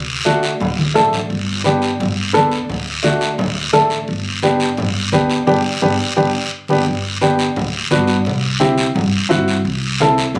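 A straight cumbia rhythm in 4/4 sets a festive, danceable mood from the start, with congas and guiro carrying the groove throughout this short cut from a longer piece. The congas sound bright and low-tuned, with a thin skin and a compressed, saturated edge, while the guiro adds a raspy scrape that sits close and dry. Underneath, a pizzicato upright bass with steel strings gives a woody low end. An up-front upright piano with a warm tone supplies the chordal accompaniment, moving between D and G before reaching C near the close. A drum fill arrives at 0.8 seconds, the band hits a shared accent from 5.5 seconds, and a new section begins at 6.9 seconds. The sound has the feel of a phone recording made in the room, with club reverb and compression giving it a lively, live-venue character.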